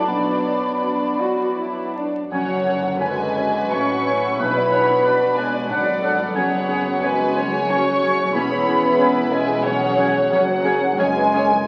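This cinematic fragment, cut from a longer piece, sounds like a very old 78 rpm record, with vinyl crackle over a wet recital hall reverb. It moves in a rubato 3/4 at roughly 78 to 94 BPM, with a longing, sorrowful mood built on chords such as Bm, F#sus2, Bmadd9 and C#m7/E. A rich violin section carries the melody with light vibrato and a sul tasto touch, joined by a darker, woody, more distant violin section and a very quiet, hollow concert flute. Beneath them a felt-muted upright piano, its action noise audible, sits in the background alongside a floating viola section, while a mellow, roomy French horn section holds sustained chords and a smooth cello section supplies the bass. At 2.3 seconds a dark clarinet and a distant oboe join with their own lines, and a pure double bass section deepens the low end.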